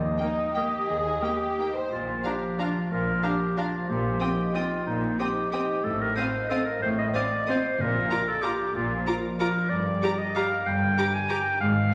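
Elegant and sweeping, this classical excerpt moves in a rubato 3/4 at 167-204 BPM in Bb major. Ringing, thumb-plucked harp arpeggios sit over a smooth, even cello section and an expressive double bass section, while a lush violin section carries the melody in the background above a close, expressive studio violin section with portamento and a viola section's accompaniment. A soft-attack oboe opens the second line before an up-front, bright clarinet takes it over at 1.6 s, round soft-mallet timpani sound briefly at 7.8 s, and the whole sits in a wet scoring-stage reverb with a layer of vinyl crackle.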